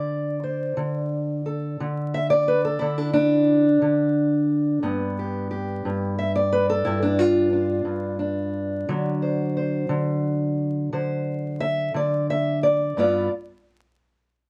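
Acoustic country blues in G major, swaggering and soulful, moving at a slow 59 BPM in a straight 12/8. A lone fingerpicked steel-string parlour guitar sits up front with a dark, boxy tone, ranging from G2 to E5 and passing through D5, G7 and D7 chords before settling on G6 at 13.0 seconds. Light reverb, vinyl crackle and a faint mains hum give the short fragment an aged, dusky character.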